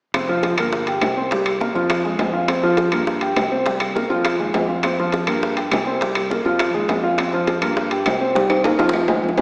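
Afro-Cuban jazz in F minor at a brisk 204 BPM in straight 4/4, this short fragment of a longer piece feels fiery and sultry. An up-front grand piano with a warm, natural tone carries the accompaniment, cycling through F minor, G minor add11 and C5 harmonies, joined by a bright, growly, punchy fingered electric bass heard direct and low in the mix. Close, ringing metal-shell timbales sit up front, while round, low-tuned bongos and woody, compressed, saturated claves stay in the background, the claves dropping out at 9.1 seconds. A drum fill arrives at 8.4 seconds and runs to the end of the fragment. A generous concert-hall reverb bathes the ensemble, though the overall sound has the character of a small speaker.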